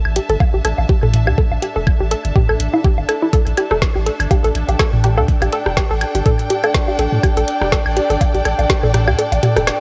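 A dark, veiled string section, muted and bowed with vibrato, fades in from the very start of this cool, clinical minimal techno excerpt cut from a longer piece, its ensemble sound pumping under sidechain compression and softened by cassette tape. A deep, punchy sine sub bass with a pitch-drop attack sits up front, also pumping, while a booming, tape-warm analog drum machine adds rim clicks, toms and woodblock through tape echo. A hollow, bouncy square-wave pluck carries the riff, its detuned, wave-folded tone mellow and treated with chorus and tape echo. A garage drum kit supplies a woody snare and metallic hi-hats, and a knocking electronic kick drives the swung groove from the front until it drops out toward the end. A light reverb and the lo-fi character of a home cassette recording tie the sparse layers together over a single suspended chord.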